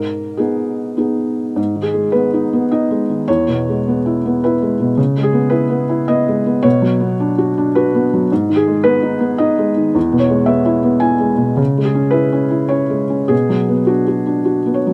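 In a 3/4 at 107 BPM, the beats sway unevenly with a rubato feel, giving this wistful, intimate neoclassical minimalist piece a gently breathing pulse in G# minor. A felt-muted upright piano plays solo for the full 14.9 seconds, its soft, mellow tone sitting up front and close, ranging from E2 up to G#5 over a repeating cycle of G#m, E, C#m7 and Bm. The sound is dry and open-air, with little reverb, so the piece feels personal and close at hand.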